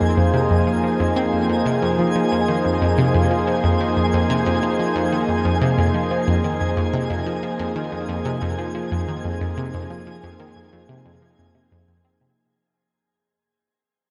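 A drenched shimmer reverb with a very long tail bathes this cosmic, expansive stretch of sequencer-driven ambient space music, cut from a longer piece and fading out from 5.3 s. Up front, a detuned sawtooth pad sustains chords on F minor through chorus, while a round, nasal analog pluck plays a riff colored by chorus, phaser and tape echo. Softer in the mix, a sparkling granular FM texture twinkles high above, wrapped in its own reverb.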